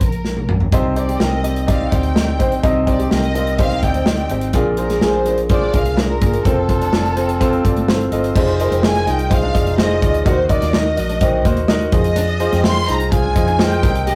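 A straight 4/4 pulse from a punchy, up-front studio drum kit with bright cymbals drives this uplifting piano-driven pop piece, a short drum fill at 0.2 seconds leading into the brilliant concert grand piano and a dark, fingerpicked steel-string acoustic guitar riff set in the background at 0.7 seconds, while a round, foam-muted electric bass holds the low end and a lush, bowed symphonic violin section carries the expressive, vibrato-rich melody, all captured in a rough rehearsal-room sound with small-room reverb and saturation.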